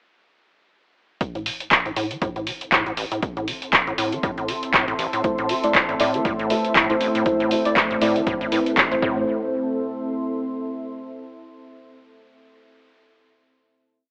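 This short, raw and trippy acid house piece opens at 1.2 seconds with a punchy, dry four-on-the-floor kick and an up-front analog drum machine of metallic hats and handclaps, re-recorded in a small room and swung on the sixteenths. Almost at once a squelchy, resonant square-wave acid bass line takes hold, with accents and slides, overdrive, analog chorus and delay, and a filter sweep running through the groove. Underneath, a deep, moody pad of detuned sawtooth and sine with a sub octave fades in, its slowly shifting chords breathing with sidechain pumping. At 5.2 seconds a warbling, nostalgic tape-like pad adds sustained lo-fi chords, while a soft, nasal chord stab moves one shape in parallel in a dotted rhythm in the background. The groove ends at 9.3 seconds, and the dark ambient pad carries the final chord alone, all heard through a gritty hardware sound with the tone of an AM radio.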